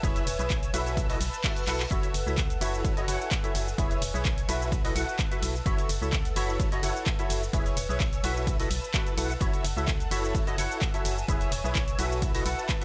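Soulful and energetic, this piano house excerpt moves at 128 BPM in F# minor, cycling through E6, B7sus4 and F#m7, with a hollow, up-front percussive organ stab riff carrying delay and chorus over a dark, organ-like FM bass that pumps against a punchy electronic kick. A punchy analog drum machine supplies cabasa, handclaps, hi-hat and ride. A very quiet acoustic jazz kit adds dark ride and snare from a small room. Behind them sit a silky analog string pad with ensemble chorus and vibrato, a very quiet, warbling, nostalgic lo-fi tape-like pad with phaser, and a faint reverse cymbal from 1.2 to 1.9 seconds, during which a drum fill arrives at 1.7 seconds, all set in digital ambience.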